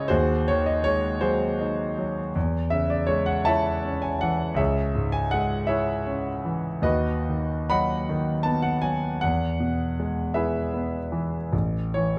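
Dark, lightly reverberant sound frames a clear, natural concert grand piano placed up front with deep bass, playing alone across this 12.2-second fragment of a longer romantic character piece in C# minor and 6/8, brooding and bittersweet at a slow, rubato 43-55 BPM as its harmony moves from G#7/D# through C#m and B/D# to E at 9.2 seconds and A at 11.5 seconds.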